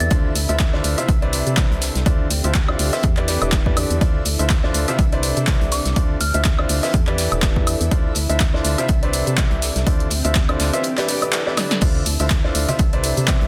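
A clear, woody upright piano riff anchors this soulful, bittersweet piano house passage, pumping against a hollow, organ-like FM bass and a blurred granular cloud pad over a gently swung groove that cycles through lush minor and major seventh chords. An overdriven, up-front electronic kick pounds alongside a punchy analog drum machine's claps, shaker, woodblock, cymbals and snare, while a big rock drum kit sits very quiet beneath, and a glassy, warbling synth bell glints in the background at the start and again around 5.7 seconds. After a drum fill at 11.6 seconds, soft-handed tambourine and congas slip in very quietly from 11.8 seconds within a dense, heavily limited mix.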